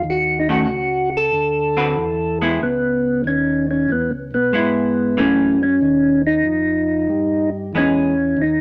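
Two tonewheel organs open this swinging, soulful jazz excerpt at 94 BPM in 4/4, with a strong swing on the eighth notes. Up front, the percussive organ carries the melody in a mellow, round voice with third-harmonic percussion, while a smooth second organ holds down the bass; both turn through a slow rotary speaker. At 0.5 seconds a vintage hollow-body electric guitar joins with dark, clean, picked accompaniment, sitting forward in the mix until 8.1 seconds. The harmony moves from Ebm7b5 through D13, Dbm7, Gbm7 and Fsus2 before settling on Emaj7. A wet studio reverb wraps the trio.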